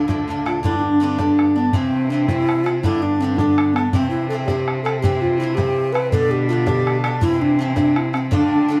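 Spirited and driving, this brief Celtic jig in 6/8 at 109 BPM sets an airy, clay-toned bass ocarina melody with a plate-reverb sheen and tongued vibrato over metallic double-strung picking from an Irish bouzouki, a biting bowed cello bass, and a tight, damped bodhran, while a smooth chamber string drone sounds only in the first 0.7 seconds, all heard from further back in a wet studio room as the chords move among G and C.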